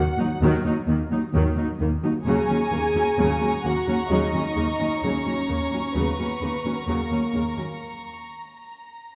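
Up front, a lush, veiled con sordino viola section carries the accompaniment in this mysterious, uneasy cinematic fragment at 65 BPM in 4/4, over the Eb2 bass of close, muted cellos and soft, distant double basses, while mellow, roomy French horns hold sustained chords and two dark con sordino violin lines, the melody and a second line, sit in the background; a high muted violin texture enters at 2.3 s, the harmony moves from Ebm to Gb/Eb, and the other parts break off by 7.8 s while the texture carries on into the scoring stage's wet reverb.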